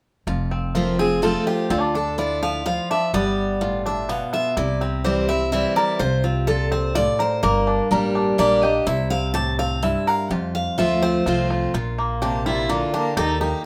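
A straight three-beat waltz feel carries this rustic, joyful bluegrass passage, cut from a longer piece, where a mellow, twangy banjo played with fingerpicks and a fresh-stringed, full-bodied picked dreadnought guitar share the melody. A second up-front picked guitar, bright with audible finger squeak, supplies accompaniment over a growly, thumpy pizzicato upright bass. At 12.2 s, shortly after the harmony moves to a new section, a single dark, distant bowed fiddle with light vibrato slips in with a woody second line, all in a moderate studio reverb.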